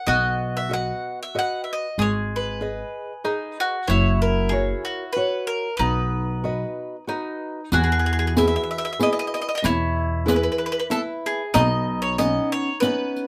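Italian folk serenade in a sunny, romantic 3/4 at 94 BPM with a lightly swung feel, cut from a longer piece, where a bright, up-front bowl-back mandolin carries the picked double-string melody over a second mandolin line, a classical fingerpicked nylon-string guitar and a woody, warm pizzicato upright bass, all in a moderate studio reverb, before the key moves from B major to E major at 7.7 s, just as a riq with bright jingles joins in.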